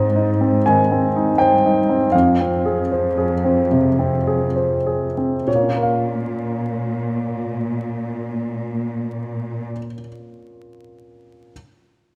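The recording sits in a reverberant recital hall with a 1.6-second decay, overlaid with a layer of vinyl crackle. This excerpt of a cinematic, emotional film score carries a moving, longing mood in Bb dorian, tuned to A4 = 444 Hz. It unfolds in a rubato 4/4 between 64 and 82 BPM, slowing over its first 5.5 seconds. A clear, intimate grand piano plays the accompaniment up front, ranging from F2 to Ab5 with its action noise audible, and continues until 11.5 seconds. Beneath it, a lush symphonic cello section holds the bass between F2 and Bb2, bowed, expressive and close, with vibrato and a gentle attack, before stopping at 9.7 seconds. The harmony passes from Ab to Fm, then settles on Bbm as a new section opens.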